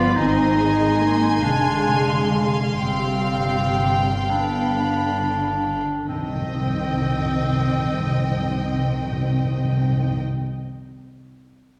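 A solemn, yearning classical passage in 6/8 opens with strings and clarinet together: a lush violin section carries the high melody with expressive vibrato, while a rich-toned second violin section and a clear, vintage-coloured solo clarinet weave second lines beneath it, and warm violas, dark cellos set in the background and smooth, even double basses fill out the harmony and bass. The rubato phrasing slows through the first 6.1 seconds before the harmony settles on a minor chord, where round, softly struck timpani enter up front and play until 10.2 s. A wet scoring-stage reverb places the ensemble further back in the room, lending this fragment of a longer piece a distant, grave glow.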